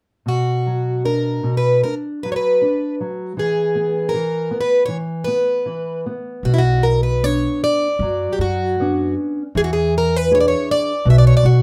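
Mournful and longing, this fado-style ballad in B harmonic minor drifts in rubato at 78 BPM: a shimmering, octave-doubled plugged-in twelve-string acoustic guitar picks the melody up front over a dark, thumb-plucked nylon-string guitar, and a woody pizzicato upright bass joins at 6.4 s as the chords move from Bm and E to Bmadd9 and E7, all within a moderate studio ambience in a passage cut from a longer piece.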